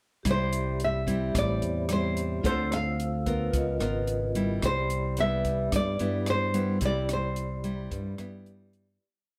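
Bossa nova in a relaxed, sunny mood, a complete short piece that fades out from 6.8 seconds. An up-front, full-bodied nylon-string guitar fingerpicks a melody of hook phrases with audible finger squeak, over a second classical nylon-string guitar playing thumb bass and syncopated plucked chords, while a vibraphone with medium mallets adds ringing, metallic held chords in rootless voicings with fast motor vibrato. A round, dark fingered electric bass plays a two-feel of root and fifth, and a dry compact cocktail drum kit keeps a soft groove on hi-hat, punchy kick and rim click, all set in light reverb.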